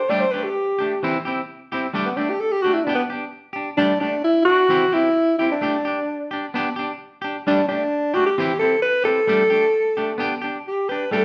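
Sunny and warm, this straight 4/4 highlife clip in G major at 131 BPM, cut from a longer piece, features a breathy alto saxophone up front, soloing in a jazz style through the first 3.8 seconds with vibrato, subtone, scooped notes and a smooth top, while a bright, clean, picked semi-hollow electric guitar, also up front, accompanies across a repeating Gsus2, C, Dsus4 and Bm progression that closes on G/B, the band playing live together in one room, bathed in a wet large studio reverb.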